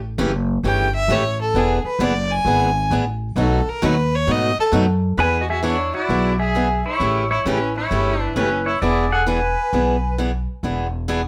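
A rich, focused fiddle with light vibrato leads this cheerful, swinging country excerpt in E mixolydian at 132 BPM. A clean, compressed pedal steel guitar, played with fingerpicks and slide and carrying volume swells, takes the melody from 5.2 seconds while the fiddle shifts to a second line. Underneath, a woody, thumpy pizzicato upright bass with gut strings and a bright, picked swing-style acoustic guitar, finger squeak audible, move through dominant seventh chords in light reverb.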